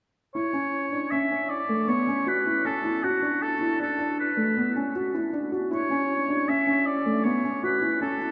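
At 0.3 s an oboe melody with light vibrato and a soft attack enters together with rippling arpeggios from a felt-muted upright piano, whose boxy, intimate tone carries audible action noise. This urgent, restless contemporary chamber piece moves at 156 BPM in an uneven 7/4, tuned to A4 = 442 Hz, over a rootless A chord. The oboe sounds roomy and classical while a vast cathedral reverb bathes the sound, and lossy compression artefacts colour this brief section cut from a longer work.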